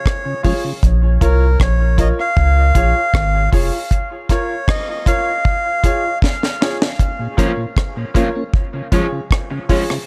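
Dub reggae at 78 BPM in 4/4, heavy and spacious in an echo-heavy small room, where a reedy, breathy melodica carries the melody through dub echo until 6.2 s over a dry, up-front drum kit with a high-tuned snare and tight kick, a deep, soft sub bass anchors the opening bars, a woody upright piano adds echoed stabs, a dark tonewheel organ with key click and slow rotary speaker returns after a drum fill, and a twangy, slightly broken-up electric guitar joins with echoed accompaniment from 7.4 s.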